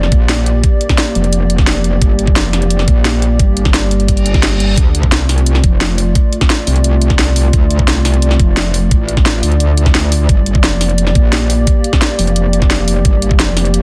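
This excerpt opens with a dark, detuned analog pad holding sustained chords while a metallic wobble bass growls beneath it, both breathing with sidechain pumping and a layer of chorus. It's dark technical drum and bass at 174 BPM in a straight 4/4, futuristic and moody, moving from G minor to D minor at 4.8 seconds and back to G minor at 10.3 seconds. An overdriven electronic kick with a knocking punch arrives at 0.1 seconds, sitting loudest in the mix alongside a drum kit of cracking snare and bright hi-hats that plays from the very start, sounds re-recorded in a small room and is placed up front. The FM bass is aggressive and saturated yet oddly mellow, with a fast attack and a sustained, wobbling body, while the wave-folded pad adds a sub octave and a slow, lingering release. A brief electronic reverse cymbal rises quietly from 4.2 to 4.8 seconds into the chord change, all within a dense, heavily limited modern master and a digital ambience.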